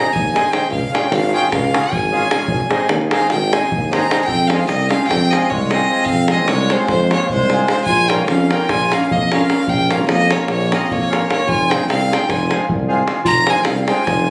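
A clear, airy-bowed fiddle leads this virtuosic, exuberant Balkan wedding-band excerpt at 301 BPM in 9/8, taking a solo over reedy accordion, a warm tuba bass and a deep, saturated davul in Ab major before the music turns to F minor at 4.3 s, where a distant, roomy clarinet joins with a second line, all heard through a recital-hall reverb on a phone recording from the room.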